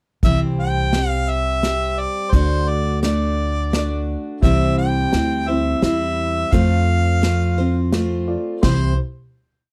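A harmonica with light vibrato carries a motif-based melody in this sunny, heartfelt honky-tonk and classic country piece in three, sounding distant and roomy against an otherwise dry, close 1970s-style studio sound. A bright, full-bodied jumbo acoustic guitar strums open chord shapes up front, a woody, thumpy upright bass with gut strings plays pizzicato root-and-fifth lines with walk-ups, and an acoustic drum kit played with bundle sticks adds dark cymbals and a punchy kick. At 4.4 s a concert grand piano with deep bass joins in the background with held triads, before the piece closes on a final chord at 8.6 s.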